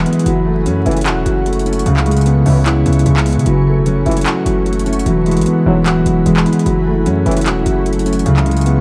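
A half-time feel at 150 BPM in 4/4 drives this menacing, hard-hitting trap excerpt in F# minor, cut from a longer piece, with the trap drum kit entering at 0.1 seconds, its electronic handclaps and metallic hi-hats roughened by overdrive. Underneath, a heavy, aggressive 808-style bass sits up front, its saturated sine tone carrying a noise layer, a fast attack and a decaying tail. A dark, vintage baby grand piano supplies smooth, long-sustained accompaniment while a thumb-plucked concert harp rings out arpeggios through a digital delay, and a cloudy, detuned granular pad blurs sustained chords high above with its own built-in reverb. From 0.9 to 7.4 seconds a distant, roomy brass ensemble adds classical-style stabs with light vibrato in the background, also echoed by digital delay. The harmony moves through F#m7, C#m7 and Eadd9, framed by light small-room ambience, vinyl crackle and a dark, warm production.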